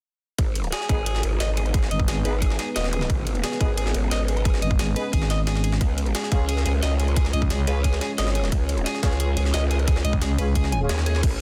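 Dark and aggressive, this excerpt of technical drum and bass at 177 BPM drives a wobbling, formant-filtered growl bass and a thick FM bass up front over an overdriven electronic kick, bright-hatted kit and a gritty, pitched-up jungle sampler kit with a high-tuned snare, while a detuned analog pad with chorus and phaser, a twangy, slightly broken-up guitar playing arpeggios through delay, very quiet vintage brass stabs and a brief zap at 2.9 seconds fill out a dense, heavily limited mix moving from G#m to C#.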